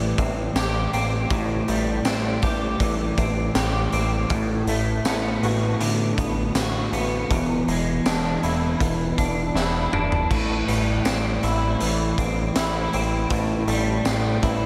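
Dream pop in a hazy, ethereal mood, with an up-front electric guitar at the edge of break-up picking chorused, delayed arpeggios over Am7, Bm/A and E7, a glossy, nasal synth bass with a filter pluck and moving notch, and a raw, gritty garage drum kit with a high-tuned snare, punchy kick, tambourine and pumping stone-room sound, which plays a fill from 9.6 to 10.3 seconds before the chords return to Am7.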